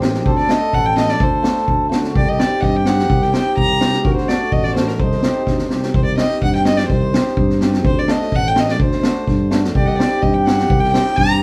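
Accordion, hammered dulcimer, tuba and a street-band drum kit start together in this soulful, festive klezmer excerpt in 2/4, and a dark, bowed violin takes up the melody at 0.3 seconds. The violin is a single player, played sul tasto with a soft attack, so its pure, floating line sounds smooth on top and sits in a plate reverb. Beneath it, the reedy, round accordion carries a second line, drops out at 5.7 seconds and returns at 9.7 seconds, while the hammered dulcimer rings and shimmers as accompaniment. The tuba plays the bass with a light vibrato and a distant, roomy, classical-style tone. The kit is up front, with a boomy kick and a high-tuned snare, and it marks the repeat of the opening phrase with a fill just before 5.9 seconds. The harmony sways between D and C minor, and the whole band is heard from further back in a live-sounding studio.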